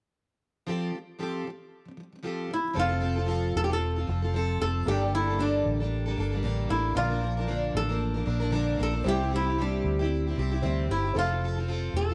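A double-tracked, picked plugged-in steel-string acoustic guitar with audible finger squeak opens this sunny, carefree pop excerpt in F major at 114 BPM with a 16th-note swing. It is soon joined at 2.5 seconds by a bright, woody flamenco guitar melody on old strings, then by a baby grand piano sitting in the background from 2.7 seconds and a dark, round, foam-muted vintage electric bass up front from 2.8 seconds, all in a small room with light reverb as the chords move through F, Gmadd9, Bb and C.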